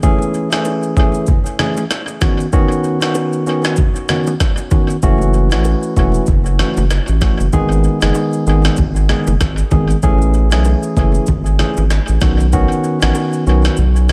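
This sultry, mellow afrobeats excerpt features a gritty, sampler-style drum kit, its thumpy kick, rim click and shaker sounding compressed, pitched up and overdriven, with vintage 12-bit crunch, tape echo and the air of a large room around them. At 96 BPM in 4/4 with a swung sixteenth-note feel, the groove sits up front beside a bright, barky tine electric piano that sounds clean and direct through its own tape echo. Very quiet congas and bongos add a ringing, close and dry acoustic texture from soft hands. A deep, thick sine sub bass with a fast attack and sustained, saturated tone enters at 5.0 seconds and becomes the loudest part of the mix. The harmony moves through Amaj7, Badd9, F#m7 and G#m before returning to Amaj7 and Badd9, all bathed in a digital, echo-heavy ambience. The kick drops out at 13.8 seconds, just before the clip cuts off at 14.1 seconds.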